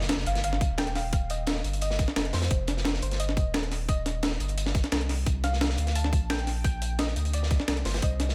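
A straight 174 BPM liquid drum and bass groove in 4/4 drives this melancholic, lush excerpt, where a tight, up-front electronic kick enters at 0.6 s beneath a pitched-up, compressed breakbeat sampler kit with a high-tuned snare and a crunchy, saturated acoustic breakbeat kit whose hats, snare and room are high-pass filtered, while a deep, thick saturated sub bass holds the low end, a soft, round, wave-folded pluck melody with analog chorus and diffuse ambient delay plays over harmony that shifts from F5 to Cm7, and a very quiet electronic impact marks the opening second in light reverb.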